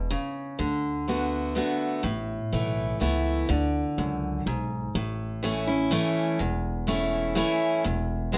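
Driving and virtuosic, this short bluegrass fragment in three-four time, cut from a longer piece, sets a bright, full-bodied picked steel-string dreadnought guitar up front, with finger squeak audible, over a woody, thumpy pizzicato upright bass on gut strings. Both play throughout, the guitar moving from fifth, sixth and suspended chords into a new section at 3.5 s that shifts between D and A before the harmony drops out at 7.9 s. A moderate large-studio reverb gives the pair some room around them.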